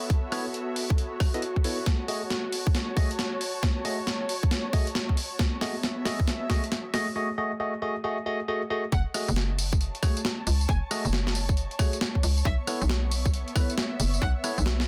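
Skippy and moody, this cut from a longer UK garage track rides a swung two-step groove at 136 BPM in F# dorian, building for its first 8.9 seconds before a drop lands. An ethereal, airy pad holds sustained chords in the background with ensemble chorus, built-in reverb and sidechain pumping, a filter sweep running across it through the build-up, while a dark, con sordino string section lays a veiled, pumping texture underneath. Up front, a gritty, overdriven breakbeat kit of hi-hat, rim click, snare and tambourine sits over a tight, layered electronic kick, with a drum fill marking the build. A bright, barky tine electric piano stabs through phaser and dub echo over harmony that moves from B9sus4 to F#m69 and later F#madd9. At the drop, a hollow, bouncy FM bass punches in, and a soft-attack violin section floats a high melody in the background through dub echo, all within a small room and a dense, heavily limited modern master.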